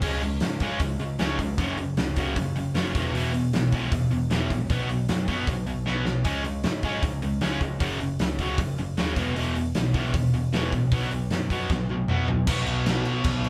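A straight, driving 4/4 punk rock beat powers this short, rebellious and upbeat excerpt, with a big, dark-toned acoustic drum kit up front delivering a fat snare, punchy kick and crashing cymbals, and drum fills at 5.9 and 11.7 seconds. A bright, double-tracked distorted electric guitar picks a riff over a four-chord cycle that repeats from 6.3 seconds, while a growly, overdriven picked bass drives the low end. The band sounds like it is playing live together in one room with light reverb, before shifting into a new section at 12.5 seconds.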